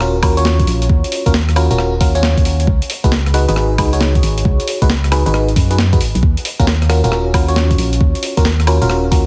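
Glassy, bell-like FM electric piano stabs with chorus, phaser and dub echo sit up front over a hollow, organ-like, sidechain-pumped FM bass, a knocking electronic kick that enters at 0.2 seconds and a gritty sampler-style breakbeat kit of hi-hat, rim click, snare and woodblock, giving this late-night, bouncy two-step UK garage excerpt at 135 BPM in Eb minor a swung 16th-note feel and a heavily compressed, radio-like sound as it moves from Ebm9 to Db7sus4 and back.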